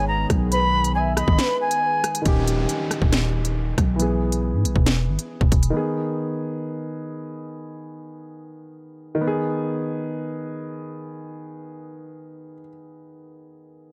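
An airy, vibrato-touched jazz flute carries the melody over a gliding, detuned portamento lead and a hollow background pad in this dark, cold half-time drill excerpt, while a deep-voiced concert grand piano plays on to 13.9 s, long after the growling, buzzy 808-style bass and the up-front drill kit with its hard-clipped kick and crisp hats stop at 5.7 s, and an electronic downlifter enters at 2.3 s.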